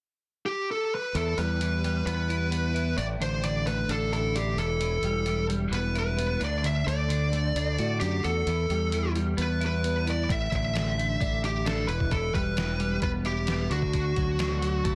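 A dense, heavily limited modern mix with light reverb opens this cool, moody indie rock excerpt in E minor at 131 BPM, as a fuzz lead guitar enters at 0.5 seconds carrying the melody, up front and distorted with plate reverb. A growling, punchy fingered electric bass with overdrive joins at 1.1 seconds, and at 1.2 seconds a bright, twangy twelve-string electric guitar with ensemble chorus picks a clean riff over a gritty, pitched-down trip hop sampler-style kit with a thumpy kick. The harmony circles through Em, Asus4 and D in straight 4/4.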